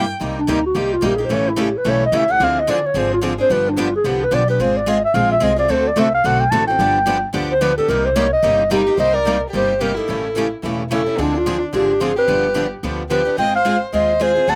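Acoustic string swing in the jazz manouche style, fiery and swinging at 219 BPM in C minor, this excerpt puts a breathy, intimate clarinet up front with subtone, vibrato and scooped notes, soloing from 0.2 to 9.0 seconds over two bright picked acoustic guitars (a steel-string with finger squeak and slapback echo, and a boxy swing-style guitar in the background) and a woody, thumpy pizzicato upright bass on gut strings, while a bowed violin with vibrato and portamento adds an expressive second line with slapback echo from 8.7 seconds, all set in light reverb.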